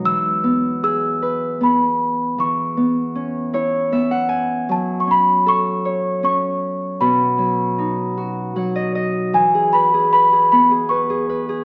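A fingerpicked Celtic harp opens this short, sleepy lullaby for children, and a celesta enters almost at once to carry the melody in an unhurried triple metre. The celesta sits up front with a bell-like, delicate tone from soft felt hammers, sweet and airy in its high register. Beneath it, the acoustic harp rings out brightly, adding fills around 3.1 and 8.2 seconds as the harmony moves from E through C#m7/E, F#m and B before settling back on E. The opening section then begins again at 9.4 seconds, just before this fragment of a longer piece breaks off. A wet recital hall reverb and the worn, warbling pitch drift of old cassette tape give the recording an innocent, faded quality.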